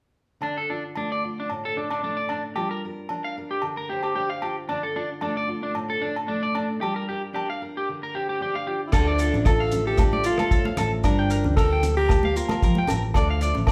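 Bittersweet and danceable, this highlife guitar band excerpt opens with a dark, full-bodied fingerpicked acoustic guitar, twangy electric guitar arpeggios at the edge of break-up sitting up front, and ringing agogo bells, all over a Dm to Gm7 chord cycle with a light swing. At 8.9 seconds the band fills out: a clear, soft-attack alto saxophone takes a jazz-style melody with slapback echo, a round hollow-body bass and a cloth-damped, thuddy drum kit with dark cymbals join, and a reedy, breathing pedal harmonium holds very quiet chords while grainy maracas shake in the background. Bright, thin-skinned congas slip in at 9.3 seconds, and the whole group sounds like it is playing live together in a large studio room with moderate reverb.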